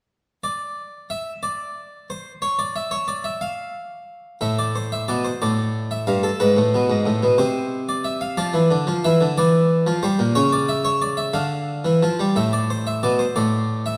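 This is a classical, baroque-style two-part invention for solo harpsichord in D minor, set in 6/8 at 60 beats per minute counted in dotted quarters with a straight feel. The mood is serious and driving, and the short passage is cut from a longer piece. The harpsichord sounds up front and close-miked, with a brilliant, plucked Flemish-style tone and octave strings that give it a full body, ranging from G2 to F5. The playing opens over an unharmonized line, then from 4.4 seconds moves through chords including Am, Fmaj13, G#m, Cadd9, Em7b5 and C#m before closing on a rootless Fmaj13 at 13.4 seconds. Although the instrument itself is captured dry, the whole is set in a moderate concert hall reverb that lends it a sense of space.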